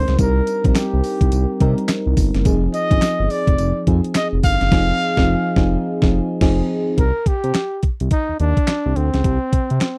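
A breathy, whispered trumpet carries the melody up front in this slick, confident new jack swing cut, its dark, close-miked tone touched with vibrato and a slapback echo. The groove sits at 106 BPM in 4/4 with a 16th-note swing feel, driven by a crisp 8-bit drum machine whose thumpy kick, fat snare, hi-hat, handclaps, tambourine and crash cymbal carry an overdriven, sampler-style edge. Beneath it, a smooth synth bass blends sawtooth and triangle tones with ring modulation and vibrato, while a round, soft FM electric piano with a faint noise layer and chorus moves through Cm7 and Fm7. The band hits an accent from 4.7 to 7.0 seconds, after which the electric piano drops out and the harmony falls away for a closing stretch led by trumpet, bass and drums. The sound is dry and close, like a 1970s studio recording, in an excerpt cut from a longer piece.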